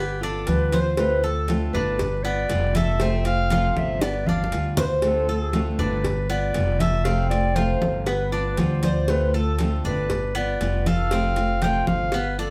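Heard from further back in a reverberant room, this danceable Cuban son and guajira excerpt sets a mellow, soft-attacked clarinet with plate reverb on the melody from 1.7 s over bright, metallic arpeggios on the Cuban tres, a woody, thumpy pizzicato upright bass up front, fingerpicked flamenco guitar, ringing low-tuned congas in the background and dry cowbell and bongos, while an airy, hollow concert flute with vibrato adds a second line that breaks off at 1.6 s and returns at 4.8 s, during a drum fill.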